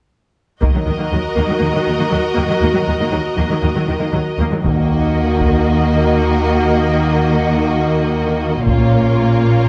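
Heavy-stick taiko drums in a live room punctuate this relentless, heroic stretch of epic orchestral film score, cut from a longer piece, striking in short bursts at 0.6, 4.6 and 8.7 seconds. In E-flat minor at 120 BPM in a straight 4/4, bowed strings with vibrato play from the opening: a lush violin section plays a second line, violas give expressive, soft-attack accompaniment, a dark cello section with portamento sits in the background, and an even, warm double bass section anchors the low end. With the second taiko burst the music begins a build-up. A smooth violin melody enters high in its range, a distant, roomy French horn section holds tight sustained chords in the background, and a very quiet timpani with hard mallets on calf heads adds articulate strokes. The harmony moves from E-flat minor to B-flat minor near the close, all set in moderate scoring-stage reverb with a softened top end.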